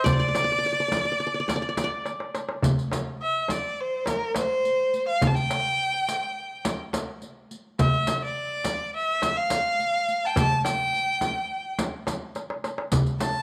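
Hypnotic and melancholic, this excerpt from a longer Turkish makam ensemble piece in 9/8 sets a clear, smooth bowed violin melody with vibrato up front against a bright, plectrum-plucked qanun second line that drops out at 2.8 s, while a small clay-shell darbuka, a deep frame drum and a jingling riq carry the percussion through drum fills at 2.1 s and 12.4 s, within a moderate echo-chamber reverb.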